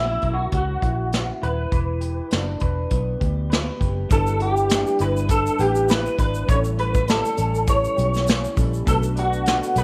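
A twangy, slightly broken-up electric guitar through a small old amp carries the melody in this wistful, hazy indie and bedroom pop excerpt at 101 BPM with a gentle 16th-note swing, its picked tone thickened by ensemble chorus and slapback echo, while a quieter second guitar adds accompaniment through subtle chorus and vibrato. A dark, round, foam-muted vintage fingered bass sits up front, and a soft brush kit with a punchy kick, medium-tuned snare and rolled-off top enters at 0.2 s, sounding distant and roomy. At 4.1 s, as the chords move from F#7 and Em7 toward G6, A7 and Bm7, mellow, detuned, warbling synth keys with a filter sweep join in the background alongside a grainy, bright egg shaker, all set in light reverb and small room ambience.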